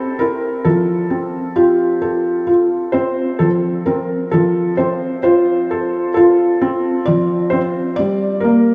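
A felt-muted upright piano plays alone, soft, mellow and intimate with audible action noise, sitting up front with an analog delay in this sleepy, tender children's lullaby excerpt at 66 BPM in F major, repeating its opening phrase at 4.3 seconds and moving from C to F to a closing G minor at 8.0 seconds, all wrapped in a dreamy, reverb-soaked mix of long plate reverb and small-room ambience.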